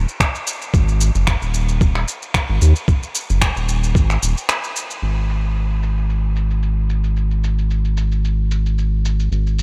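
Dry and close, this peaceful organic downtempo fragment at 112 BPM rides a lightly swung 4/4 groove, with a round, deep analog bass carrying tube saturation and sidechain pumping under a gritty, thumpy electronic kick that sits up front until 4.1 seconds, while low-pass-filtered electronic shaker and finger snaps, re-recorded in a small room, continue through a brief break and take on a filter sweep from 5.0 seconds.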